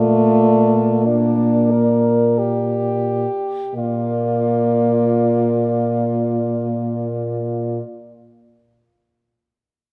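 A horn quartet opens together on a Bb chord, in a tender, warm classical passage in triple metre, taken from a longer work. Three mellow-toned French horns carry the top melody, the inner accompaniment and the low bass. A clearer-sounding fourth horn sings a second line beneath the melody. The melody, second line and bass all carry a light vibrato, and the melody keeps a smooth top. The roomy accompanying horn sits a little louder than the others, while the bass also comes forward. The rubato phrasing slows through the first half, and a second phrase begins at 3.8 s, all held in a moderate scoring-stage reverb until the quartet ends together at 7.8 s.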